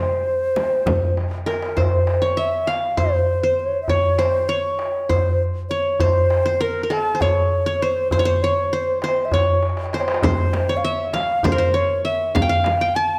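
An airy clay alto ocarina carries the tongued, vibrato-laced melody of this stately Turkish makam ensemble excerpt in C hicaz, moving at 198 BPM in 7/8, while a bright-edged, plectrum-plucked qanun plays a second line, a crisp metal-shell darbuka drives the percussion, and a deep, dry frame drum played with hard hands appears briefly near 0.6 seconds and returns from 10.2 seconds, all within a recital hall's reverberant glow.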